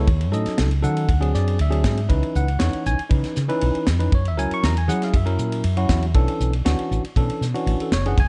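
A straight 4/4 groove at 118 BPM drives this electric jazz fusion piece, set by a tight funk drum kit in a small room with a high-tuned snare, a tight kick and dark cymbals on hi-hat and ride. Up front, a woody fretless electric bass sounds round, punchy and hollow-bodied beside a bell-like tine electric piano whose clean, bright chords move through D#m7b5, D7#11, C#m9, F#7 and Bm11. The mood is driving and nocturnal, with light reverb, a soft top end and tuning to A4 = 439 Hz.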